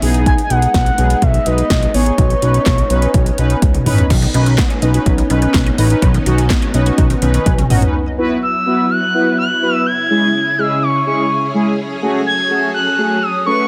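A nocturnal, cool synth-pop passage cut from a longer piece, built on mellow, brassy synth chords with chorus and a silky, vintage string machine sustaining underneath throughout. Up front, a smooth, expressive lead with vibrato, chorus and digital delay sings the melody, pausing at 3.8 seconds and returning at 8.4, while a fat, saturated analog bass and an overdriven deep house kit with a deep kick, punchy snare and metallic hats drive the first half, with drum fills before 4.1 and 7.9 seconds. A squelchy, resonant blip pluck with phaser adds background arpeggios from 4.1 seconds, and after 7.9 seconds the bass and drums stop, leaving the synths in light digital ambience over a dense, heavily limited master.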